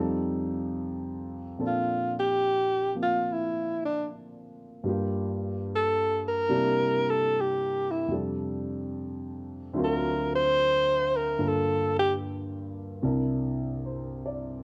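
Softly swung eighths in a slow 4/4 carry this tender, late-night jazz ballad fragment, with a natural-sounding grand piano up front supplying accompaniment through chords like F9, Bbmaj7 and a D7alt. At 1.7 seconds a mellow tenor saxophone enters on the melody, its subtone, vibrato and scooped notes giving a smooth top until it drops out at 12.1 seconds. Light reverb and the worn, warbling pitch drift of old cassette tape lend the whole recording a hazy, nostalgic cast.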